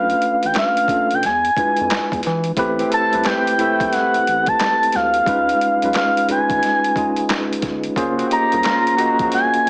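Introspective and late-night, this neo-soul R&B excerpt at 89 BPM with a swung sixteenth feel sets a smooth, dark sawtooth synth lead with chorus and vibrato up front over a worn, slightly out-of-tune tine electric piano with light overdrive, a round, deep analog bass, and a gritty, dusty sampler-style kit of thumpy kick, snare, hi-hat and handclaps, while a tight horn section adds stabs from 2.8 seconds as chords move from Bm7b5 through Am7 to F#maj9#11, all heard through light reverb and a heavily compressed, small-speaker radio sound.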